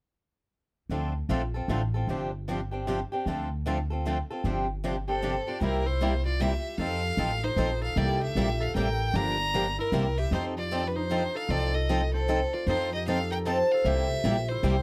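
Acoustic string swing in the jazz manouche style: a lively, charming piece in 3/4 with swung eighths, cut from a longer piece. A boxy swing-style acoustic guitar sits up front beside a steel-string guitar in the background, whose fresh strings and finger squeak give a brighter edge, both picked over a woody, thumpy pizzicato upright bass. At 5.1 seconds an intense bowed violin with vibrato takes the melody up front while a ringing, fingerpicked concert harp adds a warm second line, captured with close, detailed microphones and light reverb.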